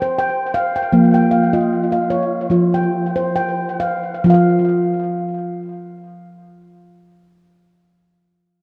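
A solo handpan carries this short, meditative world excerpt, its nitrided steel tones struck with the fingertips and sitting up front in the mix. The sound is dark and ringing with a smooth edge, ranging from low to high across the instrument's notes. Tape echo on the handpan and a deep plate reverb give the recording an echo-heavy, hypnotic atmosphere, each note trailing into a long, wet tail. The harmony moves between F5 and Bbm/F before settling, and the pulse slows over the opening 4.2 seconds with a gentle swing. After that point the chords fall away, and the handpan rings out until 7.6 seconds, ending the fragment in a calm, suspended mood.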